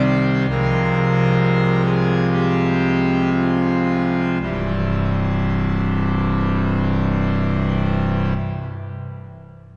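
A full pipe organ, majestic and brilliant with bright mixtures and a romantic voicing up front, plays solo in this solemn, grave classical chorale fragment in 4/4 at a rubato 54-70 BPM, spanning C1 to C5, slowing through an Fm/C harmony before settling on C at 4.4 seconds, all bathed in the long, wet reverb of a church.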